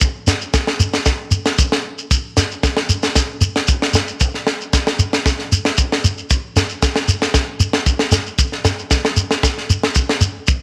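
A grainy, mellow shekere sits close and dry up front, playing alongside a tight funk drum kit whose high-tuned snare and tight kick carry a mid-forward, small-room sound. This carefree, danceable highlife groove moves at 115 BPM in a straight 4/4 feel, with both parts running together for the full 10.6 seconds of this short cut from a longer piece. Light reverb and a small-room ambience give the pairing an intimate, lively presence.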